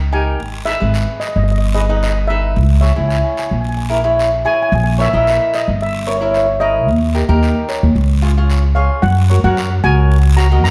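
Steel pan and upright bass open this moody, brooding calypso excerpt at 111 BPM with a light swing, the shimmering, metallic lead pan carrying the melody over a woody, thumpy pizzicato bass that sits up front, while crisp picked cavaquinho fills in the harmony and a raspy, close and dry guiro joins at 0.4 seconds, all within a dark production and a moderate recital-hall reverb as the chords move from G#m through C#m, A#dim, D# and C# before settling on F#add9 at 9.0 seconds.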